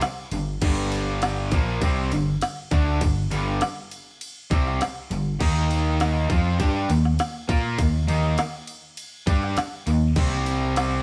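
A menacing, driving hard rock passage, cut from a longer piece, opens with three picked electric guitars grinding out a riff together: one bright, compressed and distorted, while a cranked stack guitar and a double-tracked overdriven guitar sit in the background. A growly, punchy picked bass and an electronic drum kit with a tight kick, woody snare, crash and ride stand up front, as the harmony moves from Gm to Eb5 at 5.4 seconds and C5 at 10.2 seconds. The band sounds as if playing live in one stone room with moderate reverb.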